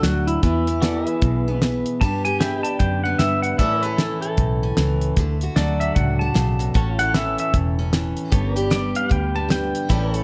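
A twangy, fingerpicked pedal steel guitar takes the solo with slide and volume swells over a second steel holding bright, clean sustained chords in this heartfelt, nostalgic honky-tonk country excerpt at 152 BPM with a swung feel, backed by a full-bodied dreadnought acoustic guitar with audible finger squeak, a dark, foam-muted, round electric bass, and an up-front damped 70s drum kit with a fat snare and tight kick, all moving through E, G, A and D chords in a large studio reverb.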